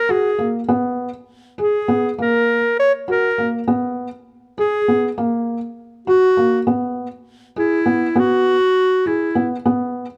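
Restless yet hopeful, this excerpt of contemporary chamber music moves in 5/8 at 201 BPM (counted in eighths) with a straight feel in E lydian. An up-front, classical-style clarinet carries the solo melody from the start until 9.5 s, while a felt-muted upright piano, dark and intimate with thick felt, short sustain and audible action noise, plays arpeggios beneath it until 10.0 s. Close, detailed microphones and light reverb keep the sound near as the harmony circles between F# and G#m/B before settling on E.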